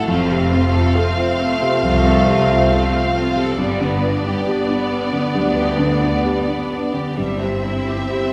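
A rubato pulse of roughly 64-69 BPM in 4/4 gives this short cinematic passage, cut from a longer piece, a slow, breathing pace and a longing, bittersweet mood. A felt-muted upright piano offers a mellow, intimate tone, its short sustain and audible action noise keeping it natural, while a French horn section holds sustained chords with light vibrato and a vintage, classical-style colour. The melody rests in a violin section with lush, expressive vibrato and a soft attack that sounds distant, supported by a clear, even second violin line and a focused viola section in the background. Cellos with a rich, smooth tone and a double bass section carry the low end from 0.1 to 8.0 seconds. The harmony moves from F to G and settles on C/G, and a wet scoring-stage reverb places the ensemble further back in the room.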